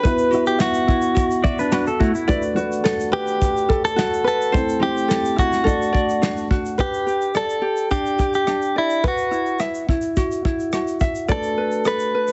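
The sound is heavily compressed and narrowed like a radio broadcast, with nothing above 8.0 kHz and a light reverb, giving this carefree, sunny acoustic pop excerpt a boxy, nostalgic haze. It moves at 107 BPM in a straight 4/4 in G major, with chords drifting from Esus2 through Bm7, Am and D to G, then cycling back through Esus2 to Bm7. A clean, direct-recorded electric guitar carries the melody up front with a picked, warm, compressed tone, over a light, fingerpicked ukulele and a soft brush kit of tight kick, rim click, shaker and medium-tuned snare that sounds airy and polished in a small room. A felt-muted upright piano adds a dark, intimate, mellow cushion, stepping out at 6.8 seconds and returning at 11.3 seconds. A bright pedal steel guitar, played with fingerpicks, slides in briefly at 1.4 seconds with volume swells as a second line.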